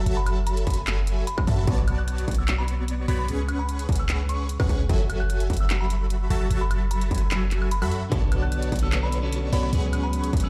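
Lush and dreamy, this short future bass cut from a longer piece moves at 149 BPM in 4/4 with a half-time feel, sitting in F# minor and tuned slightly sharp of standard pitch. A punchy, detuned supersaw stab carries the riff with a phaser and sidechain pumping, while a deep, boomy 808-style bass with a sine body and a noise layer sits up front beneath it, pumping too. Trap drums bring overdriven handclaps, bright hi-hats and woodblock, joined from 0.7 seconds by a layered, distorted electronic kick that drops out between 7.3 and 8.1 seconds. In the background, a glassy, crystalline FM bell warbles through chorus and dub echo, and at 8.1 seconds a bright, twangy electric guitar at the edge of break-up enters with subtle chorus. The harmony cycles through F#m7, Bm9 and C#7sus4, and the whole mix sounds as if played on a big sound system in a bare room, bathed in large studio reverb.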